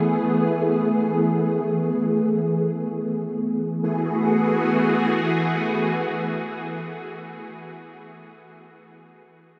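Dark, mellow and awash in a huge ambient reverb, this short IDM fragment cut from a longer piece floats in free time as a silky vintage string machine, up front with phaser and ensemble chorus, holds slow-blooming F#m11 chords shaped by a filter sweep through its first 3.8 seconds before settling into a second section, leaving a glitchy, cerebral haze.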